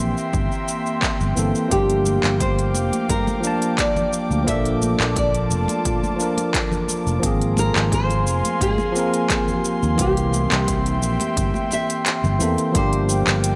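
Sunset chillout in G dorian at 87 BPM, this short excerpt from a longer piece moves with a smooth, unhurried 4/4 feel. A bright, clean tine electric piano and an airy, breathy pad with a slow attack and long release hold the chords from the start, drifting through C7, Gm7, Bbmaj7 and Ab69 under shimmer reverb, with chorus on the pad and digital delay on the piano. A growly fretless electric bass with analog chorus sits slightly forward, while a tape-tinged R&B kit of handclaps, smooth hats and shaker joins with a punchy, overdriven electronic kick. The dark, fingerpicked nylon-string guitar carries the melody from 1.7 seconds, wrapped in delay and shimmer reverb, and high-tuned congas played with hard hands add a very quiet accent from 2.1 seconds. The kick drops out briefly before the return to Gm7, and the whole mix has a lush hall ambience and a glossy 1980s-style digital sheen.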